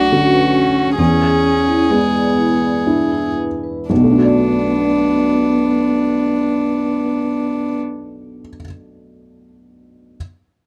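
This excerpt from a longer neoclassical piece opens with a felt-muted upright piano, boxy and intimate with audible action noise, alongside a rich violin melody played sul tasto, a dark cello second line with vibrato, and soft-mallet vibraphone arpeggios that ring airily in the background with a slapback echo until 3.8 seconds. The mood is melancholic and fragile, in B dorian and 3/4 at a rubato 57-72 BPM, slowing through the opening as the harmony moves from Bm7 to E7 and back to Bm7 at 3.9 seconds. Violin and cello stop at 7.8 seconds, leaving the mellow piano alone until 10.2 seconds in a dry, close 1970s-style studio sound.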